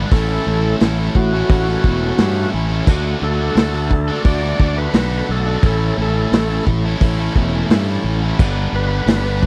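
A dry, close 1970s-style studio sound frames this confident, driving classic rock excerpt at 87 BPM in A mixolydian, moving through A, D, A and G. Two bright, overdriven picked electric guitars play the riff, the cranked stack guitar sitting in the background, while a punchy fuzz fingered bass and a vintage acoustic drum kit with dark cymbals, a tight kick and a rolled-off top sit up front. Above them an overdriven tonewheel organ carries the melody with a thick, gritty tone, key click and a slow rotary speaker.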